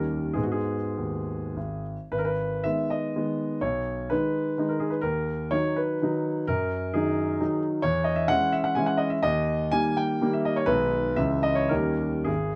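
A lilting triple-time dance built on dotted rhythms and pushed and pulled by rubato, this romantic classical piano excerpt feels capricious and nostalgic. The solo concert grand, heard up front through close, detailed microphones in a dry space, has a warm, open tone with deep bass and long sustain. Its minor-key harmony moves through shifting chords before settling on a seventh chord at 11.7 seconds, just before the passage is cut off.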